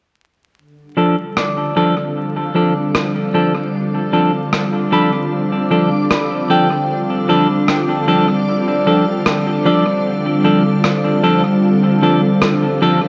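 Ambient dub with a meditative, deep mood, this excerpt from a longer piece opens with dark, clean stabs from a hollow-body electric guitar, low-pass filtered and thrown into dub echo, joined at 1.3 s by the pure, full-bodied chords of a soft organ-like pad with ensemble chorus and a slow attack. A muffled, compressed electronic rim click ticks up front through dub echo while a mellow, ringing Celtic harp plays fingerpicked arpeggios in the background under a filter sweep. From 2.8 s a reversed, granular, dreamy swelling texture drifts behind it all, and a wet echo chamber and vinyl crackle surround the mix.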